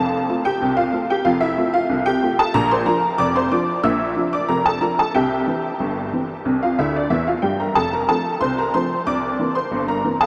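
A detuned, jangly honky-tonk upright piano plays alone through this lively, jaunty ragtime fragment, spanning F1 to E6 at 92 BPM in a straight 2/4 in F major, tuned to A4 = 438 Hz. Its chords move from F through Bb and C back to F before closing on C7, with a fill between 6.8 and 7.8 seconds. The bright, up-front piano carries a diffuse ambient delay, and the whole mix is soaked in a huge, dreamy reverb with a 7.4-second tail, cut from a longer piece at 10.3 seconds.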